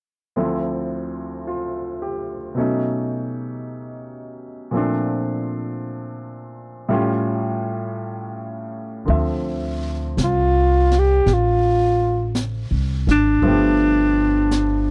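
Jazz ballad in a slow swing, intimate and melancholic, where a clear, up-front baby grand piano opens alone with rich ninth chords before a woody pizzicato upright bass and a dark, softly brushed drum kit with a high-tuned snare enter at 9.1 seconds. At 10.2 seconds a breathy alto saxophone takes the melody with mellow subtone and vibrato, sitting forward in a dry, close 1970s-style studio sound touched by light reverb, in this short cut from a longer piece.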